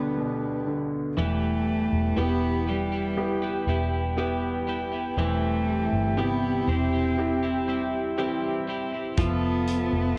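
A dark, intimate cello carries the tender melody with vibrato and an airy sul tasto bow, touched by analog delay, over a clear concert grand piano and mellow brass chords in this heartfelt 60 BPM pop ballad excerpt, joined at 1.2 seconds by bright, twangy twelve-string electric guitar arpeggios and a round, foam-muted electric bass, with a loose indie drum kit's hi-hat and tight kick appearing briefly at 9.2 seconds, all in the soft haze of a home cassette recording.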